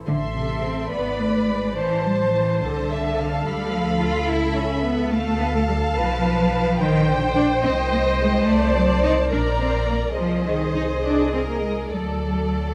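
A dark studio production sets a string orchestra on a scoring stage with a moderate reverb that lingers for about 2.0 seconds, giving this stormy, urgent passage from a classical-period movement real depth. The piece moves quickly in 6/8 at 71 BPM counted in dotted quarters, yet its pulse bends with rubato as it sets out in A minor. The first violins carry the melody high on a rich, smooth and even tone, while the second violins sing a lush, expressive line below them from a more distant position. The violas fill in the accompaniment with portamento slides, and the cellos hold the bass line up close with a focused sound, supported underneath by a warm double bass section that also glides with portamento. Every section plays bowed with vibrato from 0.1 to 12.7 seconds, as the harmony moves from Am through Dm and Gm/Bb to Ab/C and D7/C chords before ending on D.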